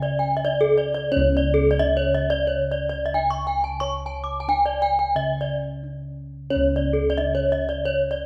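A wet recital-hall reverb surrounds this short, ceremonial piece of Balinese gamelan, cut from a longer performance. An up-front bronze metallophone, struck with a horn mallet and carrying a warm, boxy small-room character, spins ringing arpeggios whose paired tuning gives shimmering beats. Round, beating bossed gongs, mid-forward and up front, carry the bass line. A brief break falls between 5.5 and 6.5 seconds before the pattern resumes.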